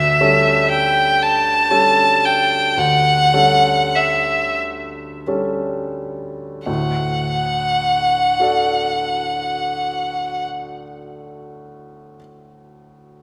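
In a rubato 12/8 with a slow dotted-quarter pulse of 26-40 BPM that slows through the first 6.7 seconds, this tender romantic classical fragment in D major pairs an up-front bowed violin melody, rich and smooth with vibrato, with an intimate baby grand piano accompaniment whose clear tone, long sustain and audible action noise sit close to the listener. The harmony rests on A7 over D before settling onto D at 6.7 seconds. The violin falls silent at 10.4 seconds, leaving the piano alone in a wet, reverberant church or concert hall space until 13.2 seconds.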